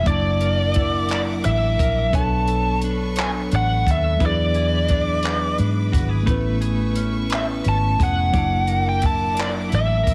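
A bright, overdriven lead guitar with slapback echo carries the melody up front in this sensual, tender slow six-eight R&B excerpt at 58 BPM, over a dark, picked clean electric guitar second line, mellow tine electric piano, bowed strings holding sustained chords with vibrato, a round, foam-muted vintage bass and a compact cocktail kit of handclaps, hi-hat and punchy kick entering at 0.1 seconds, all in a dry, heavily compressed radio sound moving through F#7alt, Bm9, E7 and Amaj9.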